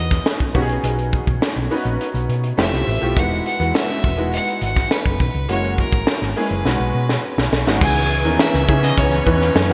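The recording sounds bright and digitally polished in the 1980s manner, set in a moderately lush hall reverb that lends this short excerpt from a longer piece a slick, nocturnal glow. It is jazz-funk pop at 103 BPM in a straight 4/4, sitting in C# dorian, with a chord sequence that moves from a rootless C#m11 through B6, Fmaj9, Emaj9 and F#9 before settling on C#m9. A single bowed fiddle carries the melody with a clear, intense tone and light vibrato, while an up-front grand piano with a boxy, short-sustained sound and analog chorus supplies the accompaniment. Underneath, a dark, round, punchy hollow-body short-scale electric bass plays fingered, and a crisp fusion kit of crash, hi-hat, punchy kick and high-tuned snare, steeped in gated reverb and a pumping small-room ambience, enters at 0.1 seconds and delivers a fill from 6.7 to 7.8 seconds. At 7.8 seconds a new section begins as a distant, very quiet studio string section joins with focused, bowed sustained chords.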